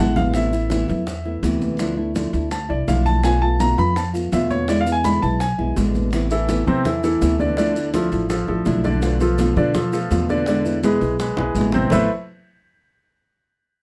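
A dark, lightly reverberant mix puts a clear grand piano, a thumb-plucked nylon-string guitar and a woody, pizzicato upright bass up front, while very quiet high-tuned congas, round low-tuned bongos and grainy, distant maracas sit lower beneath them. This danceable, sultry Cuban son and guajira cut moves at 166 BPM in A harmonic minor, with the piano playing a solo of arpeggios over Amadd9, Dmadd9, Bm7b5 and E7 until 6.1 seconds. Drum fills open the passage and return at 11.4 seconds before the progression comes back around to Amadd9.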